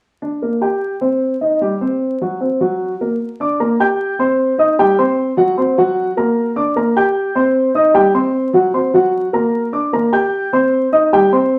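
A dark, mellow grand piano carries this short Latin clip on its own, sitting up front with a boxy tone from 0.2 s to 11.6 s. It moves at a brisk 151 BPM in a straight 4/4 feel, and its playing spans from F#3 up to G6. The harmony cycles through Gm, Cm, C5 and F# in a repeating loop, giving the danceable groove a warm yet shadowed character. An opening passage gives way to a new section at 3.2 s, where the same chord cycle continues. A wet studio reverb surrounds the piano, and a layer of vinyl crackle lends the sound an aged, dusty texture. The clip is cut from a longer piece.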